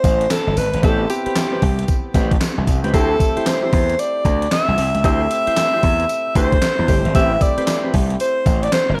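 New jack swing R&B with a slick, bouncy mood, this short piece cut from a longer track moves at 114 BPM in 4/4 with a swung sixteenth-note feel in A minor. A gated 80s digital drum machine sits up front with handclaps, hi-hat, tambourine, a thumpy kick and a gated reverb snare, its overdriven, sampler-style sound re-recorded in a large room. A gritty slap bass, bright and overdriven, holds the low end up front, while a clear alto saxophone carries the solo melody with punchy, scooped notes in a jazz style, touched by slapback echo. In the background, a grand piano with audible action noise and long sustain plays accompaniment, and a smooth tonewheel organ with key click and a slow rotary speaker adds stabs from 0.8 to 8.0 seconds, colored by slapback echo and delay. The harmony moves from Am9 to D9sus4 at 2.9 seconds and back to Am9, all set in a lush hall reverb that gives a big arena sound.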